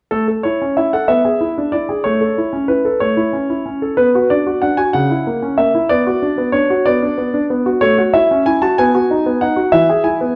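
The recording has a dark, warm production, with a concert grand piano set in a recital hall whose moderate reverb gives each phrase a gentle halo. This is a brief passage cut from a longer classical-period piano sonatina, cheerful and graceful in character, moving in a lilting 6/8 with a straight feel. The piano plays alone throughout, spanning from C#3 up to A5, and its tone is polished and up front, with a deep bass and a short sustain that keeps the lines crisp. The harmony begins by rocking between home chords, then turns toward B minor around 4.0 seconds before closing on a B chord and then an E chord near 9.7 seconds, ending poised as if about to return home. The whole passage lasts just over ten seconds.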